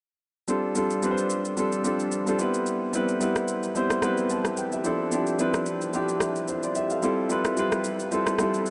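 Soulful and warm, this amapiano fragment, cut from a longer piece, sets a present, polished grand piano up front, voicing lush chords from G9sus4 through Cmaj7 and Dm9 to Fmaj9 over a gently swung 16th-note feel. Beneath it, a quieter layered electronic shaker and rim click carry a gritty overdriven edge, both parts sounding from 0.5 to 8.7 seconds. A huge, wet ambient reverb soaks the dreamy mix, its top end softly rolled off, and the slightly flat tuning at A4 = 436 Hz adds to its hazy glow.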